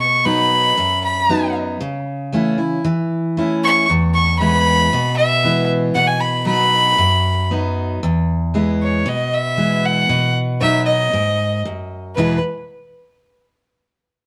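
Country music with an easygoing, down-home mood and a straight feel, in which an earthy fiddle with light vibrato and an airy bow, touched by plate reverb, carries the melody and takes a solo from 0.0 to 8.0 seconds over a bright, full-bodied picked jumbo steel-string acoustic guitar with fresh strings, both up front in a dark production with moderate studio reverb, in this short cut from a longer piece.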